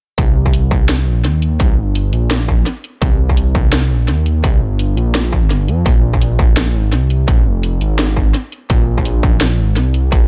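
A distorted, tape-warm electronic kick drum sits up front in this heavy, tense half-time drum and bass excerpt alongside a deep, rumbling detuned saw bass with a beating, sustained tone, while a layered drum kit adds hi-hat and a cracking snare through analog delay, all in an echo-heavy digital ambience.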